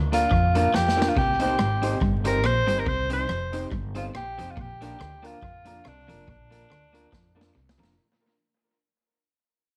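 This energetic, mischievous ska cut, taken from a longer piece and fading out throughout, opens with a bright, twangy clean electric guitar riff set back in the mix with spring reverb, alongside a woody, growly pizzicato upright bass. Almost at once a breathy, vintage tenor saxophone with vibrato carries the up-front melody, while a slightly broken-up electric guitar through a small old amp adds warbly accompaniment. A dark, mellow upright piano places stabs with tape echo, and an airy street-band drum kit with a boomy kick, rim clicks and tape echo drops fills at 0.7 and 7.1 seconds, all over a lightly swung groove moving between Bb and Cm in a small room with vinyl crackle.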